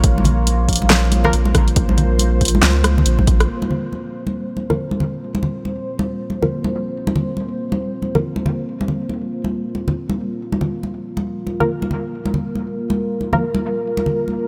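Up-front congas with a high-tuned, thick-skinned acoustic tone and soft hands carry this meditative, dark deep dubstep passage, cut from a longer piece, from 0.2 s to its end, their hits trailing into dub echo. It moves at 139 BPM in 4/4 with a half-time feel and 16th-note swing, opening on a drop that sits on a Bb5 chord. During those first 3.5 seconds, a round, deep sub bass with a fast attack sits forward, alongside a layered, punchy electronic kick and a deep house kit of handclaps, hi-hat, rim click and a fat, up-front snare. From the very start and through to the end, a moody, detuned ambient pad built from sawtooth and sine layers, wave-folded and ring-modulated, holds slow-blooming sustained chords with chorus and its own reverb. Muted, mellow sawtooth chord stabs with a plucky filtered decay and dub echo appear briefly at 1.2 s and return in the second section, where a filter sweep shapes them. 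The whole mix sits in a light digital ambience.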